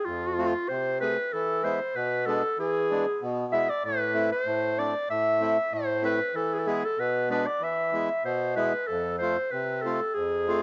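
In a straight 2/4 at 95 BPM, this soulful, bittersweet klezmer fragment in E phrygian dominant moves through F, E and A minor chords. A clear, classical-style solo clarinet carries the melody up front with a smooth top, while a reedy, full accordion, close-miked and dry, supplies accompaniment beneath it from 0.1 seconds. Both parts have a cassette-tape character from a home recording, set in a moderate spring reverb.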